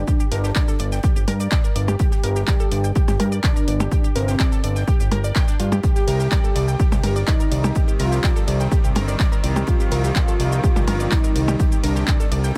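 Set in a digital ambience, this driving, melancholic melodic techno excerpt in G minor at 125 BPM pairs an up-front, tape-warm electronic kick drum and a techno kit of claps, hats, ride, shaker and percussion blips with a very quiet acoustic studio kit, under a fat, nasal, saturated analog bass, lush detuned pluck arpeggios and a bold, mellow sawtooth lead with vibrato, both pumping and trailed by delay, before a reedy, gut-toned string section slips into the background with sustained chords at 5.8 s as the harmony moves from Gm to Cm.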